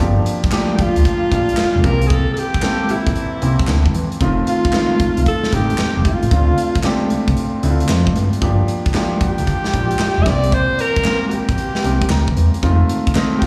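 A dreamy mix soaked in plate reverb and small-room ambience wraps this confident, punchy new jack swing groove, cut from a longer R&B piece. A big acoustic rock kit sits up front, with a punchy kick, a medium-tuned snare, handclaps and hi-hat swinging on the sixteenths in a roomy space. Underneath, a fat, saturated analog bass blends sawtooth, square and sine tones into a thick, detuned, wave-folded low end that stays sustained and mellow. An intimate concert grand piano with audible action noise and a deep bottom carries the accompaniment through a Gm7, C7, F7 and Dm7 progression, adding a fill from 11.8 to 12.6 seconds. From 0.8 seconds a clear, present alto saxophone takes the solo melody in a pop style, its soft attack and light vibrato trailed by a diffuse ambient delay.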